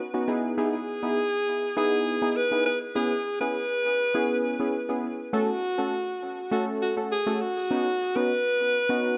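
A straight 4/4 afrobeats groove at 101 BPM sets a mellow, sultry mood in C# minor, where a bright alto saxophone with light vibrato and a breathy subtone sings an up-front pop-style solo in tape echo over round, detuned analog keys with chorus and a filter sweep moving through Emaj7, C#m7, F#m and Badd9, all bathed in light studio reverb in an echo-heavy, softly dark mix tuned to A4 = 437 Hz.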